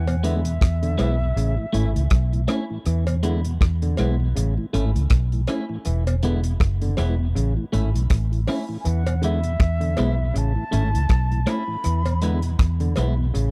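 Hypnotic and meditative, this roots reggae excerpt rides a round, punchy foam-muted bass and a dry, tight-kicked 70s drum kit with hi-hat and rim click up front, while an overdriven clav plays stringy arpeggios, a slow-rotary tonewheel organ with key click sits dark in the background, a twangy clean guitar carries spring reverb and dub echo, a cowbell adds percussion, and an airy, distant flute with vibrato drifts through dub echo from 0.0 to 2.5 and again from 8.8 seconds over a steady swing between E and A.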